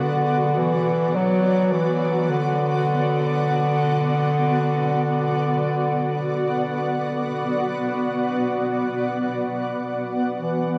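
Dark and unsettling, this free-time ambient fragment in B minor sets a distant, roomy bass clarinet solo in classical style, touched with delay, over a cloudy, detuned granular pad of evolving, blurred sustained chords with its own built-in reverb, the two sounding together throughout its 10.8 seconds inside a huge, wet reverberant space with a 7.4-second decay.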